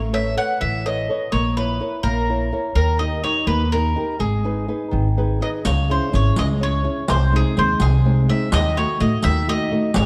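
In a straight 6/8 at 84 dotted-quarter beats per minute, this passionate, romantic Italian folk serenade excerpt sets a picked bowl-back mandolin melody on double strings over a fingerpicked flamenco guitar, whose finger squeaks are audible up close, and a woody, growly pizzicato upright bass on steel strings. A brief nylon-string guitar fill at 4.9 seconds leads the music from G# harmonic minor into C# harmonic minor at 5.6 seconds. There a softly hand-played riq enters with bright jingles and a vintage, band-limited tone, all set in a moderate scoring-stage reverb.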